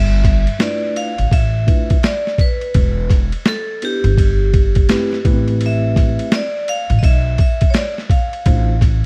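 Swung 16ths at 84 BPM in 4/4 drive this cool, mellow jazz-hop piece, where a gritty, compressed boom bap kit with a thumpy kick and high-tuned snare enters at 0.2 s beside a woody, pizzicato upright bass sitting up front; a clean tine electric piano joins at 0.6 s over G13, Em, Am9 and Dm7, and a ringing, metallic hard-mallet vibraphone with slow motor vibrato carries the melody in a boxy small room, beneath a haze of vinyl crackle.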